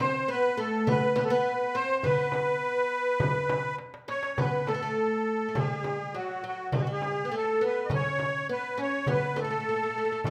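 Passionate and stately, this short clip from a longer Arabic maqam ensemble piece moves at 102 BPM in a straight 4/4. A musette accordion carries the melody up front, its reedy, shimmering tone reaching from F#4 up to a quarter-tone-inflected D5+50c. Beside it, a bright, woody oud plays a second line from F#3 to C#4, its fretless, plectrum-plucked double strings also placed close to the listener. Percussion comes from a crisp metal-shell darbuka struck with hard hands and sitting in the background, joined by a small, bright frame drum played with soft hands. A drum fill from 3.8 to 4.4 seconds leads out of the opening section into a second section that runs to the end at 10.3 seconds, all set in a moderate recital hall reverb.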